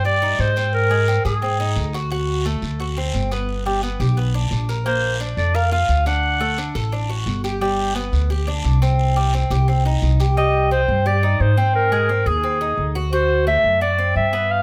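A bright, vintage-sounding clarinet sits up front in a classical style, playing solo melody phrases touched by a slapback echo. This danceable, nostalgic slice of Cuban son and guajira is cut from a longer piece. Beneath it, a Cuban tres picks arpeggios throughout, its double strings, some doubled at the octave, giving a metallic shimmer. An upright bass played pizzicato on gut strings adds a woody, thumpy pulse that is also up front, while a raspy guiro scratches along until 10.4 seconds, where it drops out and the clarinet returns for a final phrase. The close, detailed recording has little reverb, so each part comes across intimate and clear.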